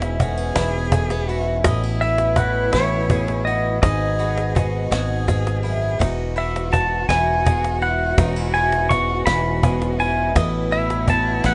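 Acoustic folk, gentle and peaceful, in E major at a slow 55 BPM in 6/8: a clean, compressed pedal steel guitar carries the melody with volume swells and slide over a rich, bowed cello second line with vibrato, while a fingerpicked steel-string acoustic guitar with audible finger squeak, a reedy, breathing pedal harmonium holding sustained chords, and a round, double-strung mandolin playing arpeggios sit in the background, a dark, punchy fingered electric bass and a woody, up-front cajon anchor the pulse, and a distant, roomy brush drum kit with shadowy cymbals joins at 0.2 s, all in a rough home-demo mix with studio reverb and a muffled top end.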